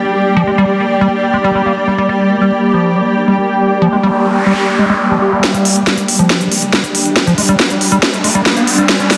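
A straight 4/4 feel drives this alien, driving psychedelic trance excerpt, where a swarming, detuned drone holds sustained chords and a blurred granular cloud pad adds texture in a lush hall reverb, both pumping to the sidechain, as a squelchy, resonant liquid acid bass riff with phaser and delay enters at 0.4 seconds, an electronic noise sweep and riser arrive at 4.0 seconds, and at 5.4 seconds an up-front drum kit of cracking snare and crisp hats joins a very quiet knocking electronic kick for a build-up with a drum fill while filter sweeps move through both the bass and the drone in a dense, heavily limited mix.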